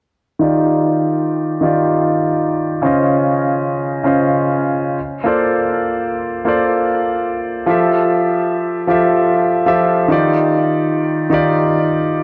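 A warm concert grand piano sits up front in this sunny, blissful chillout excerpt, its intimate, polished tone carrying audible action noise, deep bass and long sustain as it plays accompaniment from 0.4 to 12.2 seconds through a low-pass filter with delay and a filter sweep. At 99 BPM in 4/4 with a light 16th-note swing, it moves through Ebmaj9, Dbmaj9, Bbmaj9 and Fmaj9 before returning to Ebmaj9, in Eb lydian tuned to A4 = 442 Hz. A lush hall reverb with a 2.9-second decay surrounds the piano.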